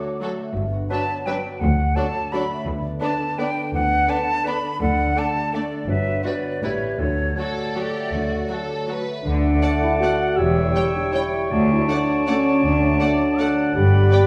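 Mellow French horn chords stand at the front of this bittersweet, dark classical fragment, cut from a longer piece in D major and moving in a rubato 3/4 at roughly 150-181 BPM. A violin section carries the melody with rich, focused vibrato. A second violin section, an airy concert flute with a crisp attack and a bright clarinet add supporting lines, while a lush viola section and a background bassoon fill in the accompaniment. Cellos and double basses enter at 0.6 s to anchor the bass with smooth-topped bowing, and a concert harp rings with fingerpicked arpeggios beneath. A new section begins at 9.3 s, and a distant cor anglais joins at 9.6 s with a roomy, lightly vibrato solo line, shortly before a C#dim/E chord darkens the harmony at 10.4 s. The ensemble is heard from further back in a recital hall with a wet, generous reverb.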